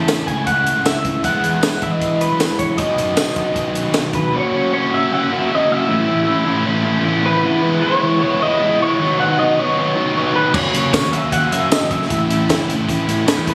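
A straight 4/4 pulse drives this jangly, carefree indie rock fragment, with a compact, dry cocktail kit of punchy kick, high-tuned snare, hi-hat, tambourine and dusky crash sitting up front beside a growling, bright, overdriven picked bass. A dark, biting, double-tracked overdriven guitar picks a riff throughout, while a lead guitar through a small old amp sings a slightly broken-up, lo-fi melody coloured by analog chorus and slapback echo. Bass and drums drop out at 4.2 seconds, leaving the two guitars over the phone-recorded room sound with studio reverb and compression, before returning at 10.5 seconds.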